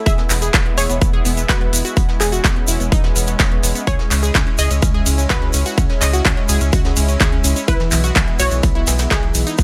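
A lush, detuned unison pad with chorus opens this hopeful, euphoric progressive house excerpt at 0.0 seconds, and from 0.1 seconds a punchy unison pluck melody with digital delay and a nasal analog pluck arpeggio with chorus, phaser and digital delay join a round, deep analog bass, all four breathing with sidechain pumping, over an overdriven, up-front electronic kick, an overdriven big-room dance kit of handclaps, hi-hat and ride cymbal, a very quiet vintage brush kit with snare and hi-hat, and a grainy egg shaker, all set in a small room reverb.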